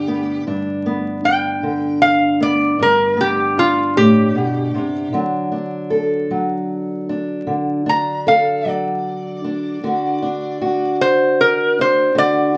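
Acoustic country blues for two guitars, this rollicking, gritty excerpt moves at 51 BPM in a straight 12/8 and sits in G major, shifting from G to D at 5.1 seconds. A metal-body resonator guitar carries the melody with a slide and fingerpicks, its voice metallic and nasal, ranging from F4 up to Bb5. Beneath it, an old ladder-braced acoustic guitar is fingerpicked for accompaniment, sounding dark, woody and boxy through its old strings, spanning G2 to A4. Both guitars sit up front and play together throughout the 12.6 seconds, as if captured live in one room. A moderate studio reverb and a layer of vinyl crackle lend the performance an aged, lived-in feel.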